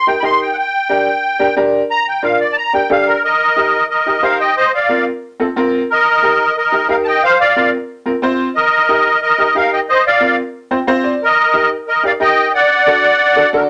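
Latin dance fragment with a passionate drive, where a reedy, shimmering musette accordion carries the melody up front and takes a solo turn through the opening 3.2 seconds, while a woody, slightly detuned upright piano with audible action noise and long sustain provides intimate accompaniment and adds a brief fill at 10.5 seconds, all set in a moderate studio reverb.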